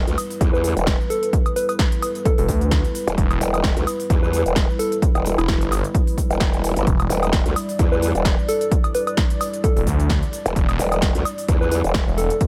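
A swung sixteenth-note groove in four drives this bouncy, aggressive bass house clip, cut from a longer piece and held on a single E minor chord. A punchy, up-front electronic kick anchors the beat, while a layered dance kit adds a punchy snare, crisp hi-hats, shaker and woodblock, all with the tight sound of a small room. A growling, wobbling bass sits prominently in the low end, bright and compressed with chorus and sidechain pumping, and at 2.4 s a thick, swirling detuned saw bass joins it, saturated and phased. Above them, a round, keys-like FM lead plays gentle decaying notes with a warbling, vintage cassette character, chorus and dub echo. Underneath it all, a deep, moody analog pad holds sustained chords at a low level, softened by subtle chorus and pumping with the kick, in a dry, close mix.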